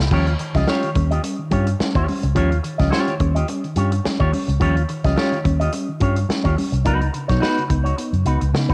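A round, foam-muted fingered electric bass with tube saturation anchors this gritty, strutting funk excerpt at 107 BPM in Eb mixolydian, alongside a vintage drum kit with dark cymbals and a punchy kick, a twangy, scooped electric guitar through an envelope filter with spring and plate reverb, and a reedy electric piano with fast tremolo playing stabs from 0.1 s, over chords moving from Eb9 to Db9sus4 at 6.9 s in a swung, home-recorded cassette sound.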